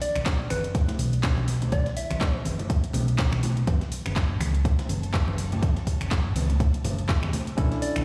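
A swung 123 BPM deep house groove in 4/4 rides on an overdriven electronic kick placed up front, joined by a second overdriven kit of finger snaps, handclaps and metallic hats, a gritty, compressed sampler-style breakbeat kit with filtered hat and snare sitting in the background, and distant congas struck with hard hands. A dark, round hollow-body electric bass carries the move from Bm to F#m, while a gentle FM synth lead with chorus and tape echo plays a short melody that stops at 2.4 seconds and returns at the close, all over a very quiet bowed chamber string section with vibrato. At 7.6 seconds a barky, lightly overdriven electric piano enters with pumping stabs, rounding out this smooth, deep excerpt, which carries little reverb.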